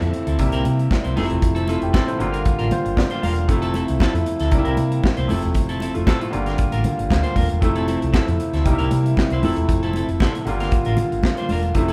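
Recorded as a band playing live in one room with light reverb, this joyful, danceable disco excerpt moves at 116 BPM in a straight 4/4, in F major. A modern studio drum kit sits up front with a tight kick, a medium-tuned snare, hi-hat and handclaps, its tone dark and smooth with a rolled-off top. A round, amped hollow-body short-scale bass is played with the fingers. Mellow French horns hold sustained chords with light vibrato in a classical ensemble style, and a clear, intimate baby grand piano, its action noise audible, accompanies and adds a short fill from 2.5 to 3.5 seconds. A clean, picked electric guitar adds a shadowy layer to the accompaniment, while congas with a thick, damped skin, high tuning and soft hands sit close and dry in the background from 0.4 seconds. The harmony cycles through C7, Fmaj7 and Gm7 throughout.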